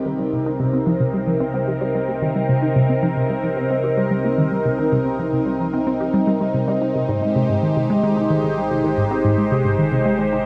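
Cosmic and hypnotic, this brief excerpt of ambient, sequencer-driven space music moves at 111 BPM in C minor, shifting from Cm7 to Abmaj7 at 7.1 seconds inside a huge, wet reverb. A swirling, up-front phased analog pad holds sustained chords with chorus and shimmer reverb, while a juicy, squelchy blip pluck runs a resonant riff through phaser and tape echo. Beneath them a fat analog bass sits very quiet, and a ringing, fingerpicked Celtic harp offers a faint arpeggio only in the opening 0.7 seconds.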